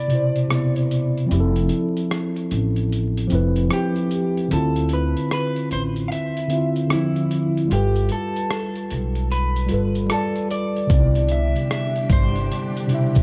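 A dreamy, mellow lo-fi hip hop excerpt in C major at 75 BPM opens with a dark, slightly broken-up electric guitar melody, fingered through phaser and tape echo, over a mellow, clean tine electric piano with a cassette-tape tint, while a gritty, compressed sampler-style drum kit of thumpy kick, hi-hat and rim click arrives with a 16th-note swing. A woody, growly pizzicato upright bass joins up front at 1.3 seconds as the chords move from Cmaj9 through Fmaj7, Dm9 and G9. At 10.9 seconds a distant, lush bowed string section adds sustained chords with vibrato and portamento, all within a warm, dark production of light reverb and vinyl crackle.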